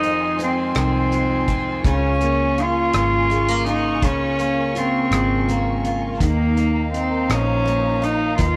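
A tender, romantic pop ballad in a slow six-eight at 55 BPM, this brief excerpt carries a soft-attack bowed cello melody that floats sul tasto over a bright, double-tracked picked steel-string acoustic guitar and a lush string section holding sustained chords with expressive vibrato. Beneath them, a dark, foam-muted vintage electric bass sits round and punchy up front, while a loose indie kit adds hi-hat, rim click and a tight kick in a natural small-room sound. The harmony moves from Fm7 to Db6 at 1.8 seconds and settles on Ebsus2 at 6.2 seconds, all wrapped in light reverb.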